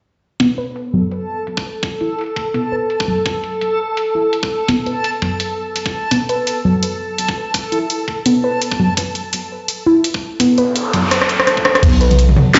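Opening at 0.4 s, a warbling, lo-fi pluck with chorus, sampler grit and delay spins arpeggios over an up-front half-time drum and bass kit of cracking snare and bright hats with a knocking electronic kick, both pluck and drums moving under filter sweeps, while a reversed, dreamy texture swells in at 1.0 s, and a noise sweep and drum fill lead into a deep, sine 808-style bass arriving at 11.8 s, the whole dark, spacious piece set in a lush hall and stone-room reverb.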